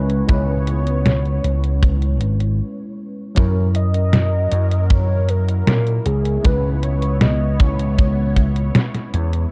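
A punchy, amped slap bass sits up front alongside an overdriven, gritty 8-bit drum machine snare and hi-hat and a tight, polished kick, anchoring this hazy, woozy vaporwave excerpt in C# dorian at 78 BPM, moving from C#m7 to F#7 at 3.4 seconds after a brief stop from 2.6 seconds. Above, a velvety, wave-folded synth lead with chorus, vibrato and tape echo carries the melody until 8.4 seconds, while a worn, slightly out-of-tune tine electric piano with ensemble chorus and analog delay adds accompaniment. A lush, detuned sawtooth pad with phaser holds sustained chords further back, all within a dark, dry production carrying cassette tape character.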